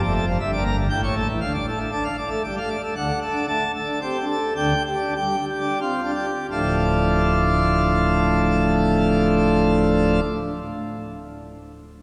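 A deep, wet cathedral reverb, with a decay of about 4.5 seconds, surrounds this short excerpt from a larger classical organ toccata, and the listener seems placed further back in the vast room. A solo pipe organ in full plenum carries everything, its mixtures giving a brilliant, romantically voiced sound that spans from a low D1 up to A5. The mood is stormy and majestic, set in D minor and 3/4 time with a straight feel, the tempo moving between 82 and 122 BPM and broadening noticeably from about 2.2 to 6.5 seconds. The harmony passes through Em7b5/G and A7 to resolve on D minor, then turns to D7 and an open G5/D sonority before landing back on D minor at 6.5 seconds. The organ sounds until 10.2 seconds, leaving the cathedral's echo to hang in the air.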